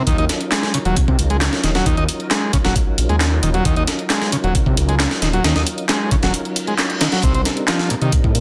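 Breakbeat with a raw, swaggering strut, built on a gritty, compressed sampler kit with a thumpy kick and high-tuned snare, layered with overdriven house handclaps and hi-hat, under a thick, menacing detuned saw bass, a buzzy vintage combo organ riff carried on digital delay, and a clear tonewheel organ holding sustained chords in the background through chorus vibrato, slow rotary speaker and sidechain pumping, while an electronic reverse cymbal at 6.5 seconds leads the move from Ebm9 to Cm9.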